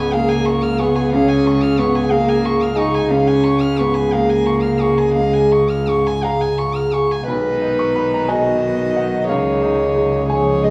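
A hopeful, intimate neoclassical excerpt in a rubato 6/8 at 60 BPM opens with a solo violin carrying a pure, floating melody over a cello's second line, a dark viola, a clear, vintage-toned concert grand piano and a woody, bowed double bass, the strings all played sul tasto with a soft attack. At 1.1 s a deep, moody ambient pad slips in underneath, very quiet, its detuned sawtooth tone colored by chorus and a phaser. The harmony rests on C# before moving to B at 7.3 s and settling on C#add9, all wrapped in moderate large-studio reverb.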